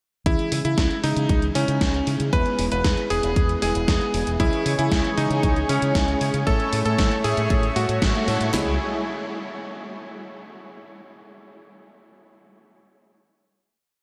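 Nostalgic and melodramatic, this short italo disco piece in C# minor moves at 116 BPM over a house drum kit's punchy four-on-the-floor kick, cracking snare, claps and toms, layered with a gated 80s digital drum machine whose hi-hats and gated-reverb snare add a disco machine beat, while a round, octave-jumping fingered electric bass with an envelope filter anchors the C#m, E, C#m, A progression. A bright, clangy electric grand piano sits up front with a repeating riff melody, and a glossy chorused polysynth with 12-bit sampler grit and a filter sweep plays held chords with syncopated pushes in the background, both trailing diffuse ambient delay. A smooth, detuned analog pad enters at 4.4 s with sustained chords, a band accent lands at 8.0 s, and the dreamy, reverb-soaked mix rings out on a final C#m chord from 8.5 s.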